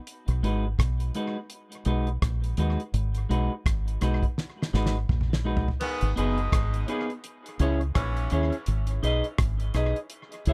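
Damped 70s drums open this roots reggae excerpt, a dry, close kit with dark cymbals, a fat snare and a tight kick, colored by tape echo, and a swung groove in four. A deep dub bass follows almost at once, fingered and foam-muted, round and punchy, sitting up front and heavy in the mix. A clean electric guitar enters just after, bright and twangy, picked over a G#m7 chord and trailed by dub echo. A drum fill from 4.4 to 5.8 seconds leads into a second section, where a horn section with light vibrato appears in the distance, roomy and soft, also carrying dub echo, as the chords move between G#m and C#m before the horns drop out at 8.5 seconds. The mood is uplifting and warm, with a dark, warm production and little reverb.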